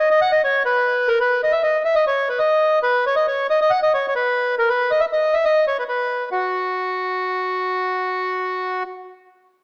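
A reedy, close-miked accordion plays alone from the start, full and up front, racing through a wild, virtuosic Balkan folk line at 137 BPM in a straight 2/4 in B major, within the range F#4 to F#5. The accordion itself sounds dry, while the recording as a whole sits in a moderate scoring-stage reverb and carries an AM-radio colour. At 6.3 seconds the tune moves into a new section, and the fragment cuts off at 8.8 seconds.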